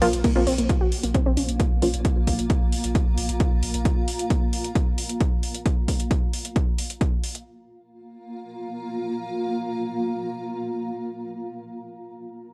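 Driving and hypnotic, this short cut from a longer peak-time techno track runs at 133 BPM in a straight 4/4, tuned to A4 = 444 Hz, with a single Bb5 chord. A punchy, up-front electronic kick drives from 0.2 to 7.1 seconds over a layered techno drum kit of metallic hats, crash and ride cymbals whose hats and cymbals pump against the sidechain, both re-recorded in a small room. For the opening seconds a warbling, lo-fi pluck riff of detuned pulse and sawtooth waves with a noise layer plays alongside a muted, filtered dub chord stab, each carrying chorus, analog delay and sidechain pumping, each opened by a filter sweep, with the pluck also gaining tube saturation. Beneath them a deep, thick sub bass holds Bb1 in the background, overdriven and low-pass filtered, until 3.8 seconds. From 1.0 seconds a cloudy, blurred granular pad with a moving notch and its own reverb spans Bb3 to Bb5, lingering until 11.8 seconds as the rest falls away. 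The sound is dry and gritty, with light digital ambience.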